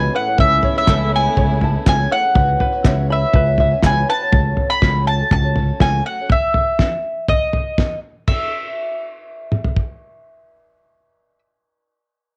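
Wistful and yearning, this excerpt of indie folk at 122 BPM builds around an up-front, round mandolin melody over a punchy fingered electric bass, a gritty cloth-damped thuddy drum kit, a shimmering octave-doubled twelve-string guitar, a plunky open-back banjo with plate reverb and analog delay, a brief murmur of felt-muted upright piano, distant bowed chamber strings, and hollow group handclaps, all captured as a home cassette recording with a dry, close feel before the drums stop at 9.9 seconds and the mandolin carries on until 11.4 seconds.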